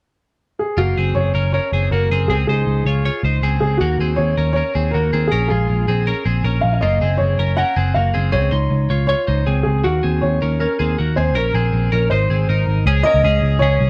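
Bright and youthful, this short cut of jangly indie pop moves at 159 BPM in Db major, with a woody, boxy upright piano carrying the melody from 0.6 seconds over an intimate patter of key action noise and long sustain. A bright, twangy twelve-string electric guitar plays clean, compressed arpeggios, while a dark, round, foam-muted picked bass sits up front, both entering at 0.8 seconds as the chords cycle through Gbmaj7, Dbmaj7, Ebm7 and Bbmadd9, passing through Abadd9 before settling on Dbsus2 at 12.9 seconds. The sound is dry and close, like a 1970s studio session, with lossy compression artefacts.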